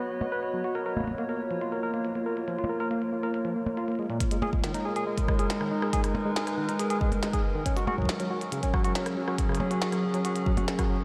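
Steeped in a vast cathedral reverb, this eerie, intricate IDM fragment sets a warbling, detuned tape-like pad of sustained chords beside a bright, barky electric piano whose lightly overdriven arpeggios carry 12-bit sampler grit and tape echo, while a glitchy kit of clicky hats, tiny snare, rim clicks and percussion blips ticks underneath until a deep, up-front electronic kick joins at 4.2 seconds.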